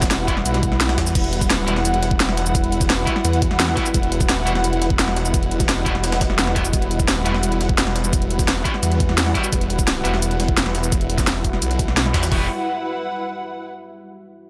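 A snarling, growling saw bass sits up front in this tense, aggressive stretch of dark technical drum and bass at 172 BPM in E harmonic minor, its detuned, tube-saturated tone pumping against the beat as the drop hits from the opening second over an Emadd9 chord. Two layered electronic kits drive the groove with overdrive and a small-room re-recorded edge: one brings a knocking kick and bright hats, the other a cracking snare, crash, shaker and hats. Buried beneath them, a very quiet jungle sampler-style kit adds a gritty, pitched-up, high-tuned snare with tape-toned compression. A deep, moody pad with a slow attack, chorus and sub-octave weight holds sustained chords, while a lush, woody string section with vibrato also breathes with the sidechain. Tight, double-tracked distorted guitar stabs with tape echo enter at 0.3 s in the background, and after the rest of the band drops away the strings carry on alone to 13.7 s, all under a light reverb.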